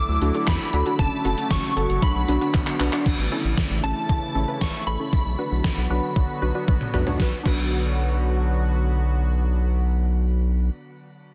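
Synth-pop with a nocturnal, driving mood, cut from a longer piece, where an overdriven, gated 80s digital drum machine with a thumpy kick and gated snare pushes alongside a rubbery, bouncy square bass up front, while a warbly, lo-fi pluck, a sweeping, bright pad with shimmer reverb, a delicate celesta arpeggio in the background until 3.0 seconds and a dreamy FM bell melody with phaser and delay until 6.6 seconds float above, with drum fills leading into each new section.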